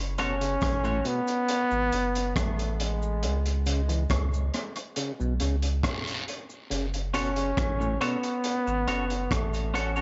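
Dub reggae with a heavy, deep mood, this fragment of a longer piece opens on a break where a round sine sub bass sits up front beneath a crunchy breakbeat kit of punchy kick, hi-hat and rim click, gritty and dark with a rolled-off top. A clear trombone carries the solo melody with vibrato and tape echo, while an overdriven auto-wah clav adds mellow, stringy arpeggios in the background until 8.2 s, and an echoed, compressed cabasa and guiro sit low in the mix. A bright, clean semi-hollow electric guitar with tape echo sounds briefly at the start and returns at 7.1 s, and the room carries a moderate spring reverb.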